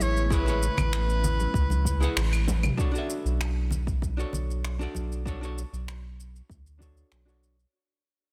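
A straight 4/4 groove at 97 BPM anchors this relaxed, sunset-hued chillout excerpt in B dorian, with a deep house kit of claves, finger snaps, shaker and toms carrying an overdriven edge and soft clipping on the snare, while a deep, tape-warmed electronic kick enters at 0.3 s and bright, close congas struck with hard hands sit in the background. A round sine sub bass holds the low end up front with a fast attack and sustained notes. Over an Amaj9 chord, a clear, punchy soprano saxophone with vibrato and delay states a short solo melody, as a dark, clean, picked hollow-body archtop guitar, miked and amplified, accompanies through a low-pass filter and tape echo. An ethereal, airy pad of detuned sawtooth and triangle layers with a noise layer, slow attack and long release hums mellow sustained chords behind them, softened by ensemble chorus and its own reverb. The sax drops out after a band accent, and a drum fill leads to Bm9 at 2.8 s, where the pad falls away and the remaining parts fade out under light reverb and a dense, heavily limited modern master.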